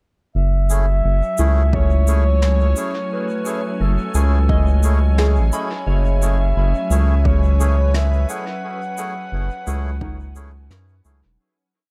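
Ambient dub at 87 BPM in F# dorian, spacious and meditative, with a round, deep analog bass up front carrying a dub-style line beneath a distant, mellow clarinet that plays short motif-based call phrases coated in 12-bit sampler grit and dub echo. A calm organ-like pad holds slowly shifting chords through ensemble chorus and reverb, while a reedy, nasal melodica places off-beat chord stabs, a gentle FM bell drifts in loops of unequal length in the background, and a sparse echoing beat of shaker and brushed snare sits over a punchy, overdriven electronic kick. The piece opens on F#m7 in an echo-heavy small-room mix and fades out from 7.7 to 11.4 seconds.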